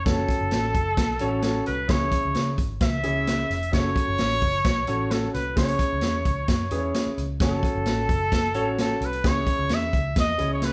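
Uptempo 1960s-style soul at 131 BPM in a straight 4/4, this joyful, uplifting clip is cut from a longer piece and moves back and forth between F#m and C#m. A mellow trumpet carries the melody from 0.1 s, its light vibrato and scooped notes giving a pop-style solo voice that sits up front yet sounds distant and roomy. Beneath it, a vintage muted picked electric bass enters at the very start, dark, round and foam-muted, with an amped, punchy edge. A concert grand piano supplies accompaniment with an intimate character, audible action noise, deep bass and long sustain. The swinging big-band drum kit is the most prominent part, with hi-hat, a medium-tuned snare and a punchy kick captured naturally and up front. The whole band plays live in one room, bathed in a moderate large studio reverb.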